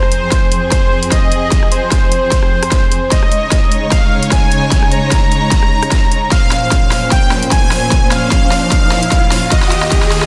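A soft, detuned supersaw carries the melody with delay over lush, bowed symphonic strings pumping beneath it and a tape-warm dubstep kit with a huge snare and bright hats, all in F minor at 150 BPM with a half-time, swung feel. A distorted, up-front electronic kick joins at 0.3 seconds as this heavy, aggressive wobble dubstep passage builds through a drum fill across Fm, Dbsus2, Bbmadd9 and Ebadd9. At 7.0 seconds an electronic riser enters in the background, and the dense, heavily limited mix sits in light reverb, cut from a longer piece.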